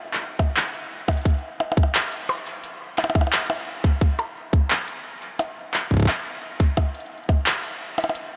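A dreamy, reverb-soaked mix with a cathedral-like tail frames this eerie, melancholic IDM fragment at 87 BPM in straight 4/4, where a tight, overdriven electronic kick sits up front from 0.4 seconds and a glitchy drum kit of clicky hi-hats, handclaps and percussion blips, roughened by overdrive and analog delay, runs from 0.1 to 8.3 seconds.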